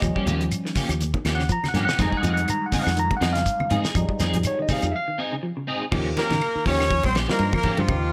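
A mix with a touch of light reverb opens this driving, funky afrobeat excerpt, cut from a longer piece and riding a swung sixteenth-note feel. Up front, an overdriven tine electric piano, barky and bright through a combo amp with a phaser, takes a solo over Eb9 and Fm7 harmony. Beneath it, a round, punchy fingered electric bass and a damped 70s drum kit with a fat snare, tight kick, hi-hat, ride and crash hold the groove. A clean, picked semi-hollow guitar plays arpeggios in the background through spring reverb, while a slightly broken-up guitar adds stabs treated with ensemble chorus and slapback echo. Woody claves, very quiet low-tuned congas and a grainy shekere fill out the percussion, with the shekere dropping out at 4.9 seconds as a short break begins. At 6.2 seconds a clear, up-front horn section enters with the melody, joined by a raspy, growling tenor saxophone on a second line.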